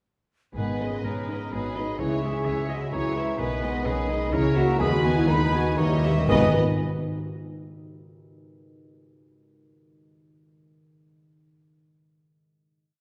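A complete classical piece for symphony orchestra in 3/4, this fast romantic movement feels dramatic and restless, pushed and pulled by rubato and slowing down from 2.7 seconds toward the final chord at 6.3 seconds. A lush, rich violin section carries the melody in a smooth, even rocking two-note figure with vibrato, while a very quiet second violin section adds expressive portamento, and dark violas and a pizzicato cello section with sustained bass sit underneath a bowed double bass section doubling the bass line. Among the winds, a bright oboe, an airy, hollow flute and a vintage-toned bassoon weave independent inner lines, and a dark, very quiet clarinet doubles the tune in unison and in thirds. A warm French horn section holds tight sustained chords, and a ringing, fingerpicked harp spins rocking broken chords in the background. Timpani with medium mallets mark single strokes on bass notes at the opening and return with a fill from 5.8 seconds, all set in a reverberant recital hall.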